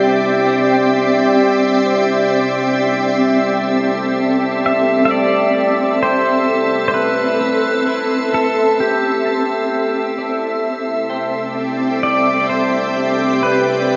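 Serene and reflective, this slow ambient excerpt at 65 BPM rests on a Cmaj7 chord held by a pure, organ-like pad that sits up front with ensemble chorus and a bright, evolving, subtly detuned tone over a sub octave, while a very quiet, dark clean electric guitar picks arpeggios until 13.0 s. A twinkling granular texture with octave-up shimmer fades in from the background across the whole passage. From 4.7 s a pedal steel guitar carries a warm, compressed melody with fingerpicks, slide and volume swells through a diffuse ambient delay, all bathed in a long, wet cathedral reverb.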